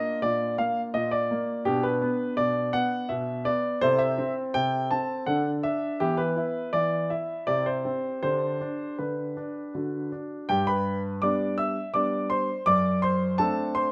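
A polished, present grand piano plays alone throughout this elegant, graceful classical-period sonatina passage in G major, cut from a longer piece, moving at 83 BPM in a straight 3/4 across a range from F#2 to E6 and shifting into a new section at 10.5 s, all captured by close, detailed microphones in a moderate recital hall reverb with the instrument tuned to A4 = 439 Hz.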